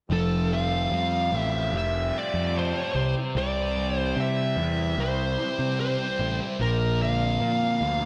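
This short excerpt of dark, mysterious rock at 74 BPM in a straight 4/4 opens with all four parts sounding together from the first moment. A compressed, distorted fuzz lead guitar carries the melody up front, its dark tone trailed by tape echo. Beneath it, a double-tracked fuzz rhythm guitar plays a thick riff colored by a phaser, while a punchy, overdriven picked electric bass holds the low end with a direct, amped presence. A reedy, breathing harmonium sustains mellow, airy chords in the background. The harmony moves from Fadd9 to C at 3.0 seconds and to Bb at 6.6 seconds, and a moderate plate reverb soaks the whole mix in a dreamy haze.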